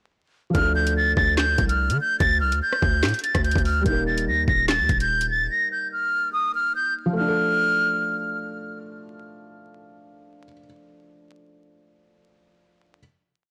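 Dark and menacing, this short, complete drill piece moves at 145 BPM in a half-time feel in D phrygian, shifting from Dm to Eb and back, with a blown-out, overdriven sound, light reverb and vinyl crackle. An airy, slightly unsteady silver concert flute with vibrato carries a looping, sample-like melody through a digital delay until 8.4 seconds, over held, open-voiced chords on a mellow, felt-muted upright piano that continues alone to 13.0 seconds. Until about 5.5 seconds, a punchy 808-style bass slides between long sub notes following the knocking kick, while an overdriven drill kit drives skipping bright hats and fast rolls, with a woody snare layered with handclaps, plus rim clicks.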